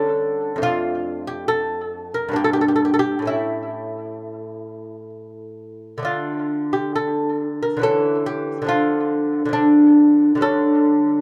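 A solo lute, fingerpicked and delicate, carries this grave, solemn baroque-style dance in D minor, its double nylon strings and octave-doubled courses sitting up front under close, detailed microphones with little room sound and a touch of tape echo. The 3/4 pulse moves at around 67 BPM with uneven beats and a rubato feel, drifting through chords such as Gmadd9, A and C#dim/D before reaching Dm near 8.7 seconds and turning to A7/D near 10.4 seconds. This brief passage is cut from a longer piece and runs just over 11 seconds.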